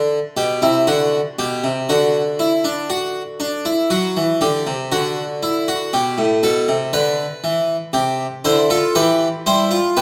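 A solo harpsichord opens this 10-second excerpt from a baroque-style three-part fugue, its lively yet stately lines moving in an unhurried 4/4 across a span from A2 to C5. The Flemish-style instrument sounds plucked and full, with two sets of strings, close-miked and up front, its dry attack set within the generous reverb of a recital hall. The harmony moves from G through D and D7 back to G before settling on C.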